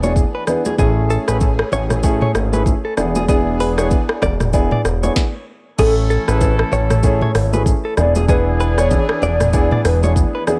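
A breezy, joyful afrobeats groove at 96 BPM in A major opens with a fat, detuned analog bass and an up-front electronic drum kit with deep kick and sharp snare, carrying a swung feel under warm grand piano, a clean, compressed direct-recorded electric guitar riff with tremolo and delay, a lush, very quiet unison pad, ringing high-tuned congas and a hollow, woody clarinet-like synth lead set in the background, and after a stop at 5.2 seconds the lead returns at 5.8 seconds joined by a distant, roomy horn section playing a second line.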